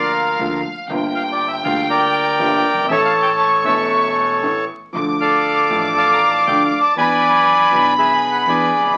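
A reedy, close-miked bandoneon carries the melody up front in this sultry, tense tango excerpt at 119 BPM with a rubato feel, while a biting chamber violin section with light vibrato adds a bowed second line above a natural-sounding baby grand piano accompaniment and a woody pizzicato upright bass in the background, wrapped in wet studio reverb and the crackle of a very old 78 rpm record as the harmony moves from Bb/D through Gm7 and A to Dm and E7.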